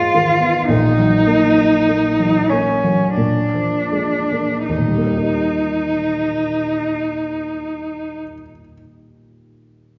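A romantic classical duo for cello and baby grand piano, this solemn, yearning passage cut from a longer piece moves in a rubato 3/4 at 38-55 BPM, slowing through its first 4.7 seconds as the harmony passes from Abm and Ebm/Bb to Bb7 before settling on Eb. A single bowed cello carries the melody with a rich, smooth tone and vibrato, ending at 8.2 seconds, while the intimate piano accompaniment, with audible action noise and short sustain, continues to 10.0 seconds. Both sit up front in a reverberant recital hall whose sound has a muted top end.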